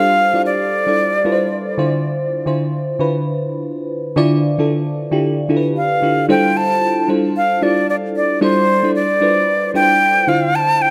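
Amapiano with a deep, soulful mood and a swung sixteenth-note feel, cut from a longer piece and set in a moderate plate reverb. A bell-like FM electric piano, sparkling with a fast attack and decaying tones, carries the accompaniment throughout with chorus and phaser, moving between G13sus4 and Dm9 chords. Up front alongside it, an airy, metallic jazz flute with expressive vibrato and a soft attack sings the melody through a delay, pausing after 1.7 seconds and returning at 5.8 seconds.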